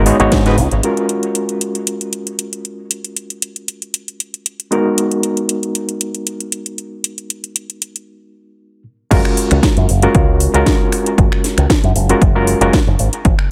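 A lightly swung 4/4 groove at 116 BPM drives this sunny, feel-good nu-disco cut in F# major, where a barky, gritty overdriven reed electric piano sits up front with fast tremolo, sidechain pumping and digital delay over G#m7, F#maj9 and G#m9 chords, while an overdriven house kit with a cracking snare, metallic hats, finger snaps and crash cymbal runs throughout; after a brief break, the picked electric bass with its envelope filter and a punchy, overdriven electronic kick return for the drop at 9.1 s, all set in a lightly reverberant space.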